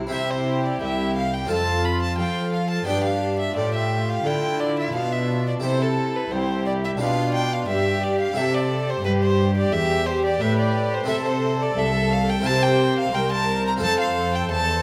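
A wet recital-hall reverb surrounds this stormy, dramatic baroque-style concerto movement, a section cut from a longer piece that moves at 88 BPM in a straight 4/4, starting in C major and turning toward A minor at 11.1 s. A single solo violin with a rich, reedy gut-string tone sits close and up front carrying the melody. A very quiet chamber violin section with light vibrato also carries the melody in the same register. Beneath them, a studio violin section with a smooth top plays a second line, while a dark, nasal viola section fills in the middle of the accompaniment. A brilliant, full-bodied Flemish-style harpsichord with three sets of strings supplies plucked harmony from the start, and a cello section sits prominently up front, anchoring the bass. The period-style bowed strings move through a progression from C and F to G7, and later Am/C, C7 and F.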